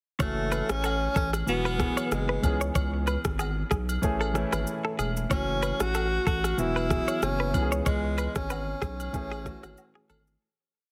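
A breathy tenor saxophone leads this smooth, mellow afrobeats piece at 94 BPM in F# minor, playing a motif-based melody of call phrases with vibrato, scooped notes and delay, up front over a warm grand piano pushing drop2 chords with grace notes through F#m7, Esus2, C#m7 and Amaj7. A bright, twangy clean electric guitar with delay repeats an interlocking figure, while a deep, saturated sub bass slides through a bouncy syncopated line and an electronic afro-pop kit sets a soft kick under syncopated rim clicks and shaker, alongside agogo bells, woodblock and handclaps. The short piece has a light small-room ambience and a heavily compressed radio sound, and fades out from 7.9 seconds.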